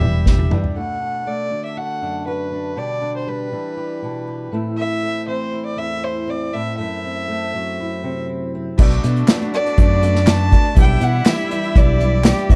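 Indie folk with a yearning, wistful mood, cut from a longer piece, where a reedy, gut-string fiddle carries the melody throughout over a fingerpicked acoustic guitar alone from 0.8 to 8.8 seconds, after a brief full-band opening capped by a drum fill; a dark upright piano with audible action noise, a full-bodied picked acoustic guitar, a breathing harmonium, a round fingered electric bass, a punchy unplugged drum kit played with bundle sticks and a nasal bowed cello with slapback echo then fill out the arrangement from 8.8 seconds, joined by crisp group handclaps and a jingly tambourine at 9.3 seconds, in a warm, dark production.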